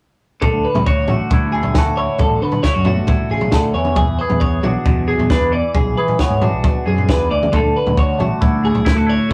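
A bright, compressed twelve-string electric guitar spins clean picked arpeggios up front in this wistful, intricate math rock and midwest emo fragment, joined throughout by a twangy, scooped electric guitar with phaser, a growling fingered electric bass with overdrive, and a dry, compact cocktail drum kit with a punchy kick, high-tuned snare and toms, all captured in a rough rehearsal-room recording with small room ambience as the chords move from D69 to E13 at 3.8 seconds and back.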